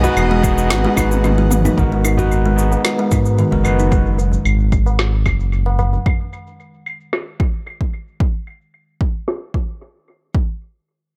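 Organic downtempo with an earthy, hypnotic mood, anchored by a dark, up-front synth bass with sidechain pumping and a punchy electronic kick entering at 0.4 seconds, alongside a deep house drum kit with a woody snare, low-pass filtered percussion and a drum fill, a low-tuned tabla in the background, a gritty overdriven tine electric piano through tape echo, plucked kalimba arpeggios under analog delay, and rich bowed strings holding sustained chords until 1.8 seconds, when the harmony moves from Emaj9 to G#m7 and a filter sweep on the drums begins in this dry, echo-heavy mix.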